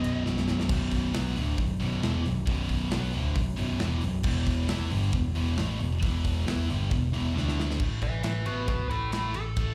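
Hard rock with an energetic, swaggering drive, caught live through a club PA with light reverb, as a heavy high-gain guitar and a sludgy overdriven guitar churn through riffs on B5 and E5 over a growly, round picked bass and a big drum kit with bright cymbals and a punchy kick. A drum fill at 7.4 seconds moves the chords through D5 to A5, where the sludgy guitar drops out at 7.8 seconds. From 8.0 seconds, a dark, nasal lead guitar with a parked wah and overdrive takes a short solo up front.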